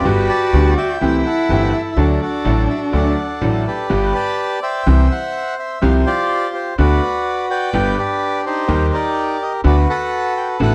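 A reedy, up-front bandoneon carries the melody over a bright, brilliant grand piano, a woody pizzicato gut-string upright bass and a bowed solo cello whose nasal vibrato and portamento stop at 3.7 seconds, in this melancholic, dramatic tango excerpt in G major at 125 BPM with a rubato feel, heard as a dry, close 1970s-style studio recording.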